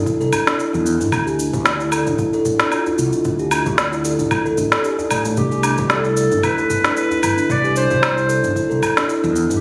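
A phone recording in a studio with moderate echo-chamber reverb, this mystical, earthy organic downtempo cut from a longer piece moves at 113 BPM in 4/4 with a light 16th-note swing. A ringing, bright steel tongue drum plays arpeggios with delay over a dark, round fretless bass carrying tube saturation, subtle chorus and sidechain pumping, while an up-front electronic cabasa, woodblock and woody snare, a soft electronic kick and a very quiet, deep djembe fill out the rhythm, and the harmony settles on D5 at 1.1 s and shifts to Cmaj7 as a distant, roomy solo clarinet with 12-bit sampler grit and delay takes the melody at 5.4 s.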